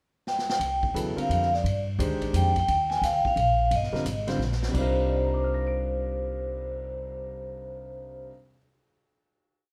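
A drum fill and the vibraphone open this short modal jazz piece together at 0.3 s, a brief pickup before the band settles on a single Cm11 chord in C minor at 0.6 s. The tempo is a brisk 174 BPM in 3/4 with a swung eighth-note feel, and the mood is hypnotic and spiritual. Up front, the vibraphone states ringing, metallic hook phrases with medium hard mallets and a medium motor vibrato, its vintage, band-limited tone giving the melody a slightly aged glow. The woody, thumpy pizzicato upright bass walks in the low register, while a warm baby grand piano comps in syncopated quartal voicings with long sustain. The big-band drum kit sits distant and roomy, with dark cymbals, a boomy kick and a stick ride pattern, adding a second fill before the piece lands on its final chord at 4.7 s, all held in a moderate large studio reverb.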